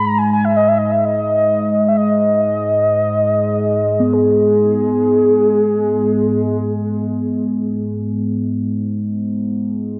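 Lush hall reverb wraps this dark, spacious, haunting stretch of free-time world meditation music, where a round, warbling horn-like synth lead with chorus and tape echo sings up front until 7.9 seconds over an evolving sawtooth analog drone, and a bronze singing bowl enters at 4.0 seconds with a metallic ring and slow beating.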